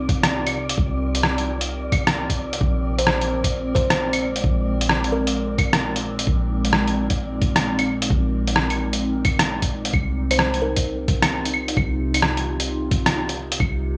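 This future garage excerpt opens with a warbling, detuned tape-like pad holding sustained chords over a deep, round 808-style bass, while an airy, wind-like tuned noise texture breathes softly in the background until 9.9 s. Set at 131 BPM in 4/4 with a 64% swing on the sixteenths in C minor, the mood is melancholic and rainy, moving from Cm11 to Bb9sus4 and settling on Cm7. Both the pad and the bass carry sidechain pumping, and the pad is further colored by chorus, phaser and its own reverb, giving it a nostalgic, mellow haze. A muffled, thumpy electronic kick and an up-front, lo-fi sampler-style kit of claves, hi-hat and rim click run from 0.1 s to 13.7 s, their compressed, tape-softened hits carrying the air of having been re-recorded in a large room. A woody, fingertip-plucked kalimba adds brief, soft phrases through an analog delay, first at 3.0 s and again near the end. The whole has a dry, gritty hardware character with only light reverb.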